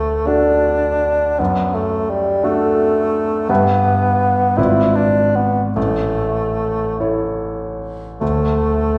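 Heard from further back in a reverberant recital hall, with some lossy compression artefacts, this nine-second fragment of a longer romantic classical piece has a serene feel in 6/8 with flexible rubato. A warm bassoon carries the melody up front in its middle register with expressive vibrato, while a clear, natural grand piano accompanies across a broad span of the keyboard. The harmony moves gently from D through Em/G and a G#dim7 to A before settling on a bare D5 at 8.2 seconds.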